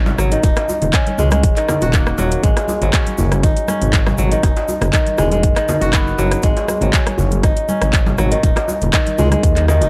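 Fingerpicked kora arpeggios ring out up front in this earthy, hypnotic afro house excerpt at 120 BPM in G# minor, their crisp tone pumping against the sidechain and trailing tape echo. Beneath them a dark, detuned saw bass rumbles low, deep and saturated, its unison voices beating as it pumps in time. A tape-tinged house kit with metallic hats, handclaps, rim clicks and toms comes in at 0.1 s, and a punchy electronic kick follows at 0.4 s, sitting up front. Further back, ringing congas, a tight, cracking djembe with metal rattles and a grainy, bright egg shaker fill out the acoustic percussion. The harmony moves from D#m7 through G#5, F#7sus4 and back to G#5 before landing on D#7sus4 at 8.4 s, all heard through a gritty, dry cassette-style sound and a small room ambience.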